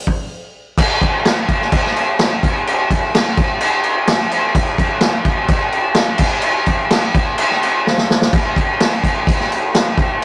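A rough rehearsal-room recording with tube saturation, light reverb and a faint mains hum gives this short rock cut a gritty, lived-in character. A vintage acoustic drum kit plays alone, up front and mid-forward, with a punchy kick, a medium-tuned snare, dark crash cymbals and a rolled-off top. The groove is straight and swaggering at 127 BPM in 4/4. After a brief break at 0.3 seconds, the kit settles into the main section for the rest of the excerpt. A drum fill arrives at 7.9 seconds before the cut ends.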